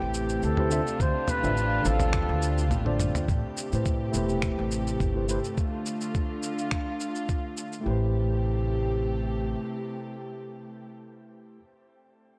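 Sunset chillout with a relaxed, warm mood, this short excerpt opens with a mellow flugelhorn phrase bathed in analog delay and shimmer reverb, floating over a clean tine electric piano, softly bowed sul tasto chamber strings and a very quiet glassy harmonics texture that lasts until 3.3 seconds. A woody pizzicato upright bass sits up front with tube saturation, while a gritty, compressed sampler-style kit of finger snaps, shaker and toms plays a drum fill at 2.7 seconds and a thumpy electronic kick runs from 1.0 to 7.4 seconds. The harmony moves through Am9, Dm7 and Dm in a dry, gritty hardware recording with light small-room ambience and transformer saturation.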